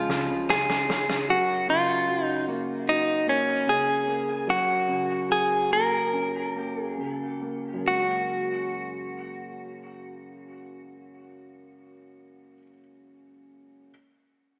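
A straight 4/4 pulse at about 67-76 BPM opens with a snare drum fill, then the tempo slows between 1.3 and 7.9 seconds in this hopeful, emotional pop ballad in F# major, cut from a longer piece. During that brief opening fill, a distant, roomy snare with a rolled-off top and a dark, round, punchy foam-muted electric bass sit in the background before both fall away. A bright, clean electric guitar, picked, compressed and up front, carries the melody through a diffuse ambient delay. Beneath it, a warm concert grand piano supplies accompaniment with deep bass as the harmony moves from C# to F# and settles on F#add9. The whole mix is dreamy and soaked in lush hall reverb, with an AM radio character.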